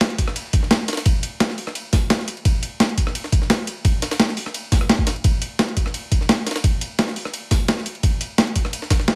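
A straight 4/4 drum and bass groove at 172 BPM drives this soulful, melancholic fragment, cut from a longer piece, with a compressed breakbeat kit sitting up front on hi-hat, rim click and a medium-tuned snare, its sound gritty and tape-warm as if re-recorded in a small room. Beneath it, a quieter, pitched-up jungle kit adds hi-hat, ride cymbal and snare, high-pass filtered to a thin, airy layer. From 0.2 s an overdriven electronic kick brings a thumpy, distorted punch to the front of the largely dry mix.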